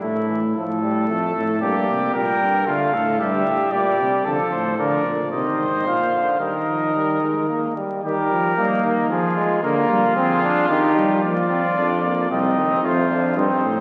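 Classical imitative canzona for brass ensemble in a lively, stately 3/4 at 113 BPM, cut from a longer piece, where a clear, present trombone, a mellow, soft-attacked bass trombone sitting up front and a second trumpet with a smooth top play from the start, before a warm, lightly vibrato lead trumpet enters up front at 1.6 seconds and the harmony later moves from G minor to Eb major, all heard through a wet church reverb and the crackle of a very old 78 rpm record.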